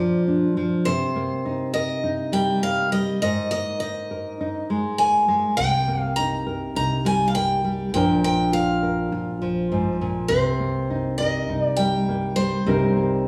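Acoustic folk for a duo or small band, this short excerpt cut from a longer piece feels intimate and wistful, moving in a straight four. A bright, boxy parlour steel-string guitar carries the melody up front, picked high in its range. Beside it, a thumb-plucked classical nylon-string guitar supplies the accompaniment, also close and up front, with a rounded, mellow tone. At 5.6 seconds a pizzicato upright bass with gut strings enters, woody and thumpy, sitting low and further back in the mix. The chords circle between Bb, Cm7 and Absus2, and the players sound as if they share one small room, wrapped in a generous, wet studio reverb.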